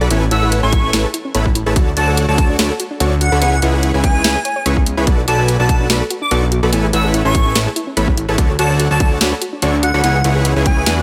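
Future bass at 145 BPM with a half-time, lightly swung feel in D lydian, bright and lush, this short cut from a longer piece moves through Amaj9, Dmaj7, C#m7 and Bm7 as a fat, saturated analog bass with a filter sweep and a huge, detuned supersaw riff pump under the sidechain, a soft, round, warbling pluck plays arpeggios with chorus and delay in the background, a hard-clipped electronic kick and a trap kit of sharp snare and bright hats sit up front in a small room, and an airy, dreamy lead with a noise layer and digital delay carries the melody from 0.3 s, all under light reverb.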